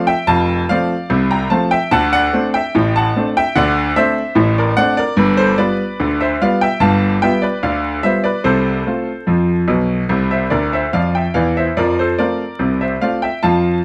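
Vinyl crackle and light reverb frame this lively, playful ragtime passage for solo grand piano, whose clear, worn, up-front tone with short sustain spans from deep bass to bright upper notes in a straight 2/4 feel through chords moving from F to D7 and G7, with a brief piano fill from 10.5 to 11.8 seconds before the cut from a longer piece at 13.8 seconds.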